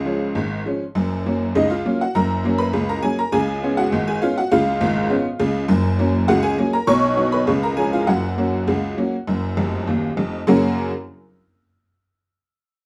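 A metallic, jangly tack piano carries this lively, cheerful ragtime excerpt alone, sitting up front with a boxy, vintage, percussive character across a range from deep bass to bright treble. At 101 BPM in a straight 2/4, it moves through F# major harmony built around C#, F#, B and C#7, with a light reverb around it. A honky-tonk piano fill at 9.6 seconds leads into a new section at 10.5 seconds, just before the piano stops at 10.9 seconds.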